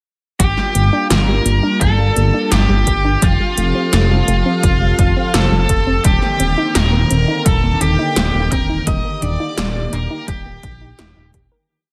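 Synthwave piece, nostalgic and cinematic, where a smooth overdriven lead guitar carries hook phrases with delay over a dark, detuned saw bass pumping in eighth notes, a punchy overdriven machine kick, a gated snare with metallic hats, a swirling phased pad on Gm7, Fadd9, Cm7/Eb and Ebmaj7, a soft round pluck arpeggio in a 12-step loop drifting against the bar, and shimmering vintage string-machine violins doubling the lead an octave higher, all fading out from 7.9 seconds.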